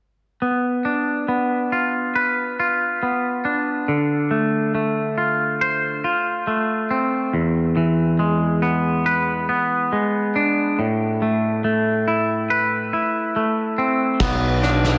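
A light reverb frames this brooding, cathartic post-rock excerpt at 70 BPM in 4/4, where a bright, twangy electric guitar, clean and up front, plays picked arpeggios through spring reverb and slapback echo over Bdim, Dm7, E7 and Amadd9 from 0.4 s. At 14.2 s the harmony moves to Bm as a growling, overdriven picked bass and a loose acoustic drum kit arrive together, the kit bringing a punchy kick, a medium-tuned snare and dark crash cymbals in a pumping studio room.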